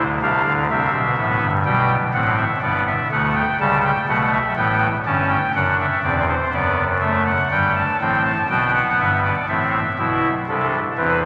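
Joyful and lively, this short cut from a longer baroque-style three-part fugue is played entirely on a soft-reed pipe organ, its up-front oboe solo stop shimmering with tremulant in a straight 4/4 over a C, G, A7, D7, G progression before shifting at 9.5 seconds to an Amadd9, all bathed in a cavernous cathedral reverb with a vinyl crackle underneath.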